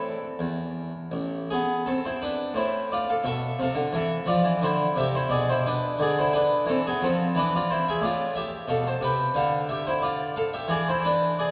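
Grave and solemn, this short excerpt from a longer baroque-style suite movement sets a solo harpsichord in A minor at 88 BPM in 4/4, played with a free, rubato feel and tuned to A4 = 443 Hz. The Flemish-style instrument sounds airy, plucked and full, its two sets of strings spanning A1 to A5 and sitting up front, while a long cathedral reverb of 4.1 seconds gives the sense of hearing it from further back in the room. The harmony moves from A minor through E7 over B, returns to A minor at 8.0 seconds, then passes through D minor to close on E7.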